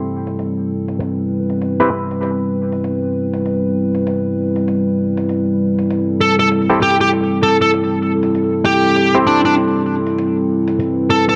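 A dark, detuned analog pad with chorus and 12-bit sampler grit sustains Am7 and Cmaj7 chords beside stringy, percussive clav stabs through a combo amp from 0.0 s, while a gritty, pitched-down electronic hi-hat joins in the background at 0.3 s of this swaggering, playful glitch hop piece at 98 BPM with a swung 16th feel in A minor, and a bright, picked, overdriven electric lead guitar carries the melody up front from 6.2 s within an echo-heavy mix and moderate spring reverb.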